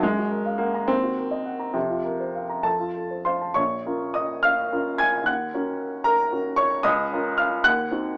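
A romantic classical character piece for solo piano, this short passage taken from a longer work is bittersweet and passionate, unfolding in 6/8 at roughly 64-78 BPM with a flexible rubato feel in Bb minor. The upright piano carries everything alone, spanning from deep bass notes up into the high treble, and its tone is woody, polished and up front, with a warm presence. The opening section drifts through yearning harmonies, moving from Gbmaj7 through a suspended F chord that resolves to F major. At 3.6 seconds a second section settles onto Bb minor and moves through Ebm7 before closing on a diminished chord that leaves the phrase unresolved. A moderate studio reverb gives the instrument a modest sense of space, while the overall sound has the slightly narrow, boxed-in quality of a small speaker.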